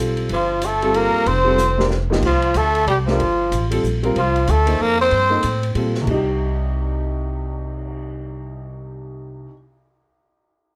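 Hypnotic and intense, this brief modal jazz fragment in a swung 3/4 sets a breathy, dark-toned trumpet carrying the melody with vibrato and scooped notes over a gritty, growling tenor saxophone second line, both sounding from 0.3 to 5.7 seconds, while a vintage grand piano and woody pizzicato upright bass hold down suspended harmony that settles on a minor chord at 6.1 seconds, and a small-room drum kit with dark cymbals and a punchy kick adds a fill just before the second section, all in a moderate club reverb with plate reverb on the trumpet.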